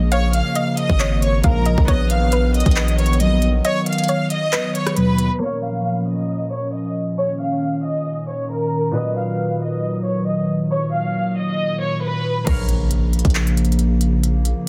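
This trap-inflected hip hop cut, taken from a longer piece, moves at 136 BPM with a half-time feel in Bb phrygian, and its mood is menacing and eerie. A rich, focused studio violin section carries the melody with bowed vibrato, sounding distant yet up front, while a bright, ringing concert harp is fingerpicked beneath it and a hollow, flute-like pad holds dark sustained chords throughout. In the opening passage, a distorted 808-style bass hits heavy and aggressive alongside an electronic trap kit with a hard-clipped kick, crisp hats, handclaps, rim clicks and crash. Mellow, brassy synth stabs with a round, full-bodied tone and chorus join from 1.4 seconds, and a bouncy square pluck with tape echo sits in the background. The bass drops out for a break at 3.6 seconds, and the drums, stabs and pluck fall away by 5.4 seconds. That leaves the strings, harp and pad under a long filter sweep until the beat and bass return at 12.5 seconds with a very quiet electronic impact. 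The dense, heavily limited master is dry and low-pass filtered, with the harmony shifting between Bbm and B/Bb.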